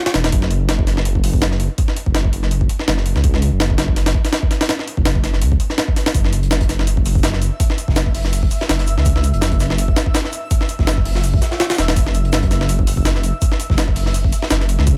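Dark and raw, this drum and bass excerpt with a jungle edge pairs a gritty, overdriven sampler-style kit with a thumpy kick, up front beside a deep, rumbling detuned saw bass that beats and sustains, while a crunchy, saturated breakbeat kit with a rolled-off top slips into the background at 6.2 seconds and a twinkling granular texture with an octave-up shimmer and its own reverb drifts in behind at 7.0 seconds.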